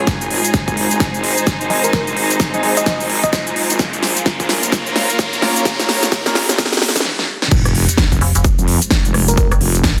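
A huge-snared, crisp-hatted big-room drum kit and punchy electronic kick drive this aggressive, gritty bass house build-up, where a saturated wobble bass, a deep, moody pad, distant bowed strings, background grand piano stabs, sparkling bell-like FM electric piano phrases and a riser with sub drop gather before a stop at 7.0 seconds and a drop at 7.5 seconds, with an up-front metallic FM bass arriving at 8.2 seconds.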